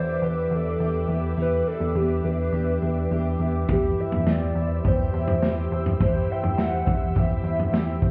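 Opening on an Em7 chord, a warbling, nostalgic lead synth carries the melody between G4 and G5, its detuned tone coloured by chorus, tremolo, vibrato and delay. Beneath it an ethereal, airy pad holds sustained chords with a slow attack and long release, bathed in ensemble chorus and its own reverb. A fingerpicked twelve-string acoustic guitar adds shimmering, octave-doubled arpeggios with audible finger squeak, dressed in lush chorus and delay, while a plucky analog bass sits up front on E2 with a dark, funky filter pluck. At 3.7 s the harmony moves to C/E and a lo-fi vintage drum kit enters, its punchy kick, medium-tuned snare and toms sounding muffled with a rolled-off top. This short dream pop passage at 104 BPM in a straight 4/4 feels dreamy and ethereal, heard as if through a wall in a small club room.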